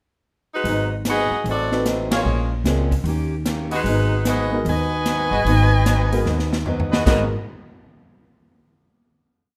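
A clear saxophone section leads this short, brassy and dramatic big band swing piece, carrying a motif-based melody in four-part block voicing with vibrato, while a woody, growly upright bass plays a two-feel line up front and a punchy, airy drum kit keeps time on the hi-hat with a stick backbeat. A boxy archtop guitar strums jazz chord shapes in the background, and a concert grand piano with deep bass and short sustain adds syncopated rootless comping. A warm trumpet section enters with a band accent at 2.1 seconds for close-voiced stabs, a drum fill at 6.3 seconds leads into a final chord, and light reverb surrounds the ensemble.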